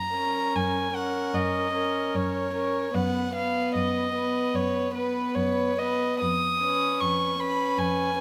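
Close, detailed microphones in a moderate recital hall reverb capture a serene, slow romantic classical movement for string quartet at 75 BPM in F# major, shaped with rubato: a rich, floating violin melody sits up front over a second violin with light vibrato and an airy bow, a pure viola accompaniment and an intimate cello bass, all four bowed sul tasto with a soft attack as the harmony moves from F# to B/F# at 2.9 seconds and to C#7/E# at 6.2 seconds in this short cut from a longer piece.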